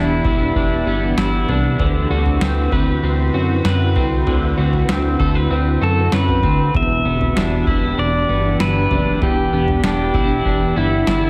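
A brief, twangy pedal steel phrase played with fingerpicks opens this haunting dream pop excerpt in E minor at 97 BPM, over an airy, warbling pad, a slightly broken-up electric guitar picking chorus-soaked arpeggios with tape echo, and a glossy, detuned synth bass. Moments later, at 0.2 seconds, a booming analog drum machine with a deep kick, crisp snare, toms and overdrive enters, and at 1.8 seconds the harmony moves from Em7 to D13. The bright, up-front pedal steel falls silent until 5.8 seconds, then returns with volume swells, slide and tape echo, and the chords settle back on Em7 at 6.7 seconds, all within a lightly reverberant, heavily compressed radio-like sound.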